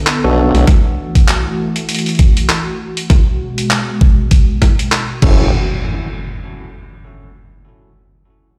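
Heard through a big sound system in a bare stone room, this funky, playful glitch hop fragment at 99 BPM in F# minor swings a knocking, overdriven electronic kick up front under a gritty, pitched-down sampler-style kit of snare, hi-hat, handclaps and crash, while a detuned, warbling analog pad carries pumping chords through a filter sweep, a formant-sweep wobble bass and bell-like tine electric piano stabs with digital delay appear at 0.2 and again at 5.2 seconds, and an electronic impact lands at 5.3 seconds, just before the chords drop out.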